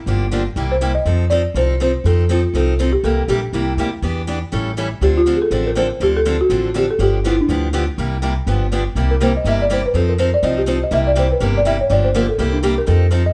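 Swinging briskly at 243 BPM in 4/4, this lively excerpt of acoustic string swing in C mixolydian sets a thumpy, growly pizzicato upright bass and a bright, boxy picked parlour steel-string guitar beneath a dry, rustic folk marimba melody that enters at 0.7 s and takes a solo from 9.0 s, with the band heard live in one room under light reverb.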